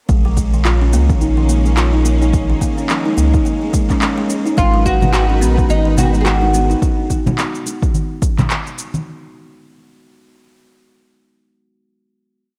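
Organic downtempo with a mystical, earthy mood, this short piece rides a relaxed, swung groove from start to finish. A deep, round sub bass sits up front with long gliding notes, while a buzzing kalimba with a woody, hollow-box tone repeats a 32-step arpeggio through tape echo. Behind them, a lush symphonic string section holds sustained chords, its clear bowed tone roughened by vintage 12-bit sampler grit and breathing with sidechain pumping. The beat pairs a punchy, overdriven electronic kick with layered electronic cabasa and handclaps, and at 4.6 seconds acoustic bongos and congas join as a fretless, double-strung oud enters with arch-shaped motif phrases through tape echo. The strings, kalimba, bass and oud stop at 6.8 seconds. The kick carries on until 8.5 seconds, and the hand drums, cabasa and claps continue until 9.0 seconds in a dark production with light small-room ambience.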